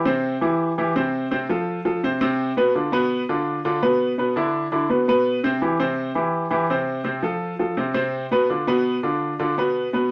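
Latin piano piece at 167 BPM in a straight 4/4, driving and fiery, with a solo grand piano, intimate and up front with audible action noise, cycling through C, F, Bdim and E5 chords in a moderate studio ambience across this roughly ten-second excerpt cut from a longer work.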